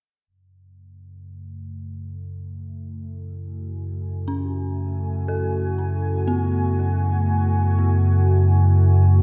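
A deep, ominous, warbling drone with a slow attack emerges at 1.1 s under a filter sweep, joined at 1.6 s by a moody, detuned ambient pad fading in with chorused sustained chords, and from 4.3 s an eerie, inharmonic FM synth bell fades in with arpeggios trailing dub echo, the echo-heavy mix set in a wet chamber reverb in this desolate dark ambient drone excerpt cut from a longer piece.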